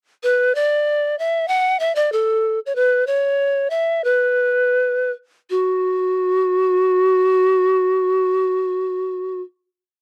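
Earthy and festive, this short Andean folk piece in 2/4 moves at a straight 76-96 BPM, with a lone pan flute carrying a motif-based melody of song-like phrases between F#4 and F#5. The flute sounds woody, airy and bright, up front and tongued with audible chiff and vibrato, its playing unsteady, captured dry and close in a 1970s-style studio. The tempo slows from 2.8 to 5.5 seconds before the flute settles onto a final note held until about 8.7 seconds.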